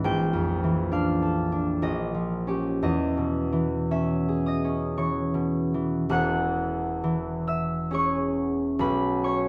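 A fingerpicked concert harp, ringing and up front in light reverb, plays this serene, peaceful classical solo cut from a longer piece, moving in a rubato 3/4 at 49-70 BPM in E lydian (tuned to A4 = 438 Hz), spanning E1 to F#6 as its chords drift from A#maj7#11 to A#m6 and E6 before settling on Bsus2 at 8.8 seconds.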